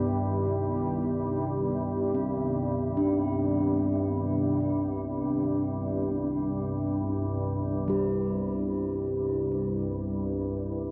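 Floating in free time, this dark, unsettling ambient drone fragment from a longer piece rests on a calm, detuned, organ-like drone placed up front in its own chorus and reverb, while a deep, moody sawtooth pad with a sub octave holds chorused, phased chords alongside the ringing, delayed arpeggios of a mellow, felt-struck bronze singing bowl, until at 7.9 s the pad drops out, a filter sweep moves across the drone, and a second, vintage, band-limited bowl struck with suede adds metallic, slowly beating texture, all bathed in a huge, cavernous reverb.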